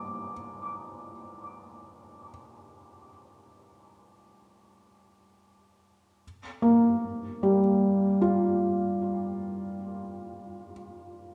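Ambient and spacious, this reflective excerpt moves in free time, carried by a single felt-muted upright piano that sits up front with a soft, intimate, dark tone across its span from G3 to D6. The piano is wrapped in diffuse ambient delay, and a wet concert hall reverb with a 2.0-second decay blends with small room ambience and the gentle grain of cassette tape. Opening on a Gm7 chord, the music shifts into a new section at 6.2 seconds before the fragment ends at 11.3 seconds.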